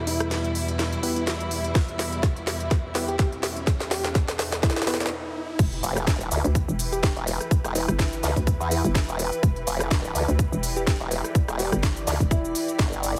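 A swaggering, bouncy bass house excerpt in E minor at 125 BPM with swung 16ths opens on a rich, bowed string section pumping under a low-pass filter and a cloudy, evolving granular pad, joined by a round, keys-like synth lead set in the background with chorus and dub echo, a garage drum kit of cracking snare, crisp hats, rim click, cabasa and crash playing a fill, a hollow organ stab filter-swept through the build-up, a tight, up-front kick, and a very quiet electronic riser and impact, until a brief stop gives way to the drop at 5.6 seconds, where a punchy, mellow knocking FM bass and an overdriven, wobbling formant-sweep bass join in, the mix sitting in a heavily compressed, radio-like sound with light reverb.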